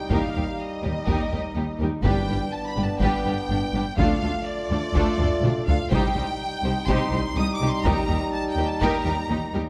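A rich, lush violin section carries the melody over a smooth second violin line, warm and distant French horn chords, focused violas, dark woody cellos and clear double basses in this heroic, dramatic epic orchestral film-score cue at 124 BPM in 4/4, driven by a taiko ensemble struck with hard sticks that plays a fill at 5.2 seconds, while a timpani note sounds briefly in the background at 2.0 seconds, all moving through Eb, G, Dm and Cm chords in a moderate recital-hall reverb.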